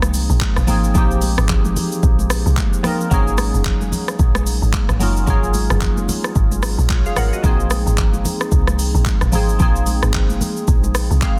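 The recording has a dense, heavily limited modern master set in a digital ambience, and this soulful amapiano groove is cut from a longer piece, with a swung sixteenth-note feel in 4/4. The deep log drum bass carries the low end: round, dark and percussive, with a fast attack that quickly decays and a noise layer riding on top of its FM tone. An up-front, layered electronic house kit pairs a deep kick and smooth hi-hats with handclaps, rim clicks and shaker, all given a tape-warm character, and soft clipping adds grit to the snare. Glassy digital keys, built from sine and triangle tones with ring modulation, a filter sweep and chorus, outline the harmony, moving from Bb9sus4 to Ab9sus4 at 3.1 seconds and back again at 7.4 seconds. Bright, close and dry congas with a thin skin sit in the background, and a short keys fill arrives at 11.0 seconds just before the clip ends.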